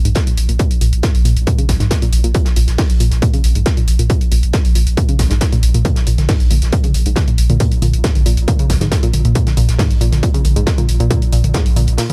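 A driving, straight 4/4 pulse at 137 BPM anchors this industrial, hypnotic slice of peak-time techno in Bb minor, built on a heavy, overdriven electronic kick sitting up front from 0.2 s alongside a layered, distorted techno kit of hi-hat and toms and a distant, roomy soul kit whose filtered hi-hat and medium-tuned snare hover in the background. Underneath, a round sine sub bass holds Bb1 with tube saturation and sidechain pumping. An analog pluck riff, wave-folded and bright with chorus and digital delay, moves between Ab2 and Db3 under a filter sweep that runs the full 12.1 seconds of this cut from a longer track, all framed in a small room ambience.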